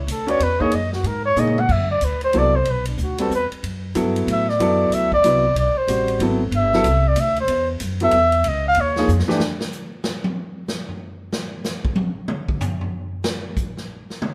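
A veiled, breathy bucket-muted trumpet leads this cool, searching modal jazz passage in B phrygian, soloing up front with light vibrato over a fast swinging 3/4 at 187 BPM, moving through chords from A and F# to Bm7, C and C#. A woody, dark pizzicato upright bass, a deep-toned concert grand piano accompanying, and a big-band drum kit with a boomy kick play together in a moderately reverberant room, the drums adding a fill at 1.4 seconds. From 9.4 seconds the drum kit carries on alone in a solo, its medium-tuned snare, toms and cymbals ringing naturally until the cut at 14.3 seconds.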